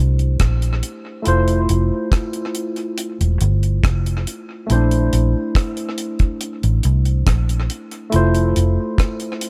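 Lovers rock reggae at 70 BPM in 4/4 with a straight feel, this short passage from a longer piece sits in F major and feels sweet and smooth. A bright, barky tine electric piano carries the accompaniment from 0.0 to 9.5 seconds, lightly overdriven through a combo amp and coloured by lush chorus and tape echo. Beneath it, a vintage fingered electric bass, foam-muted, dark, round and amped, holds the low end until 8.8 seconds. A deep reggae drum kit enters at 0.2 seconds with hi-hat, a tight kick and rim click, its acoustic, dry sound touched with tape echo. The harmony moves between Bbmaj9#11 and Fmaj7, and the piano, bass and drums all sit up front in a studio reverb.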